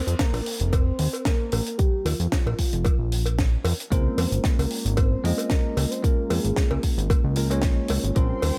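A lightly swung groove from a punchy, up-front electronic kick and a tight funk kit with hi-hat and a high-tuned snare drives this sleek, groovy nu-disco excerpt, with a close, dry cowbell adding color. A fat, detuned analog bass with a filter sweep sits beside a soft, round octave-layered synth lead washed in chorus, phaser and dub echo, while a bright, bell-like tine electric piano with tape echo enters at 3.9 s as the harmony moves from Bbsus2 to Db6. A lush unison pad with sidechain pumping appears only at 8.3 s, just before the cut, all set in a studio reverb.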